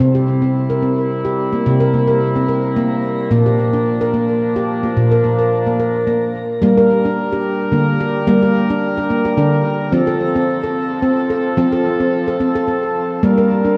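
A bright, airy handpan of nitrided steel sits up front with ringing arpeggios played with sharp finger strokes and trailed by diffuse ambient delay and shimmer reverb, while a clear brass ensemble with light vibrato and soft attack holds classical-style sustained chords further back under its own shimmer, in a gentle, meditative world piece at 109 BPM in 3/4 with a light swing, set in G dorian and moving through C, Bb, Gm and F in a short passage cut from a longer work, placed in a wet scoring-stage reverb with a dark, warm production.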